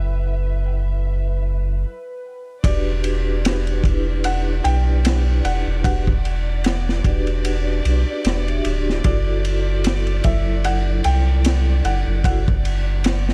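A deep, round dub sub bass with tube saturation sits up front in this smoky, brooding trip hop excerpt, joined from 2.6 seconds by a crunchy, punchy breakbeat kit of kick, high-tuned snare and dark ride cymbal with a rolled-off top. Above them, a felt-muted upright piano carries a soft, intimate melody with audible action noise and tape echo, while a metallic, ringing vibraphone with tremolo plays accompaniment and a woody, lush violin section holds sustained chords, all three coloured by vintage 12-bit sampler grit. A tense, string-like drone with built-in reverb opens the piece alongside filter sweeps on the vibraphone and violins before a short break, and the dry, dark production moves between F#m7b5 and Em9 chords.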